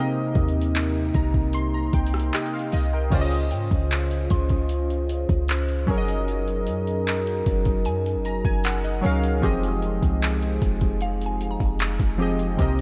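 Detuned sawtooth analog keys sit up front in this moody, longing stretch of contemporary R&B, their round, chorused tone shaped by a filter sweep, with fills from 0.7 seconds and again later on. Beneath them a dark French horn section holds sustained chords with light vibrato and a smooth top, lending classical ensemble weight. At 0.4 seconds a clean 808-style bass enters, deep and boomy with a mellow sine body. It arrives alongside an electronic drum kit of soft kick, handclaps, rim clicks, metallic hi-hats and crash cymbal, re-recorded in a small room. From 3.5 seconds a faint, woody FM pluck drifts in the background, percussive with a noise layer, chorus, phaser and diffuse ambient delay. The harmony moves from Cm7 through Dbmaj7 and Gb69 to Fm7, and a moderate cathedral reverb soaks the mix in a dreamy haze.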